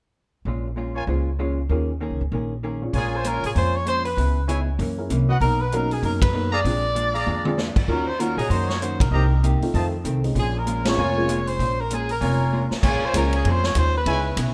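A fast 4/4 big band swing at 194 BPM in B-flat minor, this sultry excerpt opens with woody, thumpy pizzicato upright bass and a dark, clean hollow-body electric guitar, joined soon after by tight, smooth-topped trumpet stabs and an intimate, mellow baby grand piano with audible action noise. The distant, roomy drum kit with its boomy kick enters at 2.9 seconds, and the loose, vibrato-rich saxophone section takes the melody up front at 3.0 seconds over changes that move from Bbm7 through Gb7 and Bmaj7 before returning home. Band accents punctuate the groove at 6.2, 9.0 and 10.8 seconds, with short drum fills leading into later phrases, all set in light reverb.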